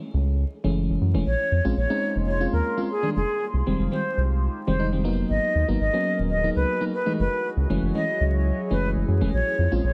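A lightly swung 119 BPM deep house groove in 4/4 sets a moody, deep tone as a round analog bass anchors the low end, a mellow chorused FM electric piano adds soft, dark stabs through a tape echo from 0.6 seconds, a hollow, close-miked concert flute with vibrato carries the melody in dub echo from 1.3 seconds, and a warbly, nostalgic tape-like pad drifts in at 1.8 seconds with phaser shimmer over minor ninth chords, all wrapped in light reverb, vinyl crackle and a dense, heavily limited master in this excerpt from a longer piece.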